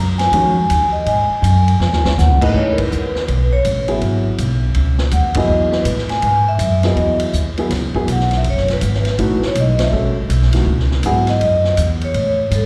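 Vibraphone with medium mallets and a woody pizzicato upright bass open this searching, spiritual modal jazz passage in C# minor, swinging at 162 BPM. The vintage kit, with its dark cymbals and punchy kick, joins at 0.2 seconds, and a baby grand piano adds accompaniment just after. The metallic, ringing vibraphone carries the melody with slow motor vibrato and a slapback echo, an echo the natural-sounding piano shares, while the bass sits up front and the drums stay further back. A short drum fill near 1.8 seconds leads into a new section at 2.5 seconds, where the harmony moves from G#7sus4 onto C#m9 and later F#m9 amid band accents, all heard as a live gig through the venue's PA with recital hall reverb.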